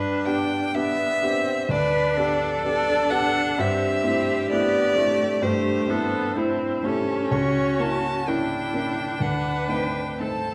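A moderate recital-hall reverb and a dark, warm production give this brief passage, cut from a longer piece, an intimate concert-room sound. It is a lyrical, slow romantic movement for piano quartet in G major at 64 BPM in 4/4, played with a flexible rubato feel. Up front, a single violin carries the melody with a rich, smooth and even bowed tone and vibrato, while a solo viola adds clear, focused accompaniment that sits more distant in the room. The baby grand piano, also up front, is mellow and natural, with short sustain and audible action noise. At 1.7 s a solo cello enters with a second line, bowed with vibrato, a soft attack, portamento and expressive phrasing. The harmony moves from G through Am7/G to C#dim7 and settles on D5 at 9.2 s, near the close.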